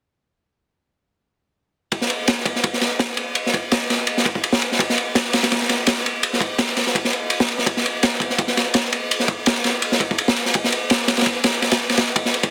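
A slightly swung breakbeat drives this frenetic, raw drum and bass fragment, with a crunchy acoustic kit of tight kick, medium-tuned snare and dark ride cymbal playing from 1.9 to 12.5 seconds. The kit sits up front in a small room with light reverb, its saturated, gritty tone and rolled-off top giving it a dark, warm character under a dense, heavily limited modern master.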